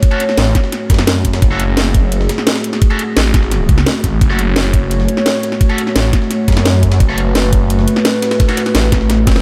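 A dark analog pad holds moody, wave-folded chords with subtle chorus and sidechain pumping, while a knocking electronic kick and an overdriven drum and bass kit with cracking snare and bright hats drive this mechanical, aggressive excerpt of dark technical drum and bass. A thick, swirling detuned saw bass with phaser and tube saturation enters at 0.4 seconds and sits up front beside the kick. In the background, a gritty sampler-style breakbeat kit adds ride cymbal and a high-tuned snare, and a double-tracked, overdriven electric guitar throws out bright picked stabs with delay, all in a light digital ambience.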